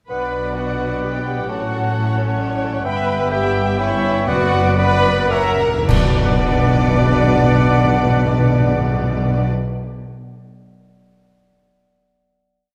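A stormy, urgent romantic orchestral piece in triple time opens with strings, winds and brass together: a focused violin section carries a rocking two-note melody over lush symphonic violins doubling the tune, a viola line, sustained horn chords, trumpet stabs, and oboe, flute, clarinet and bassoon moving in the tune's rhythm above a deep bowed bass of cellos and double basses. Cymbal swells, crashes and bass drum strokes arrive at 2.9 s as the music slows, and timpani join at 4.3 s, rolling into a fill that leads to a band accent. A long final chord rings out from 5.9 s in the generous reverberation of a scoring stage.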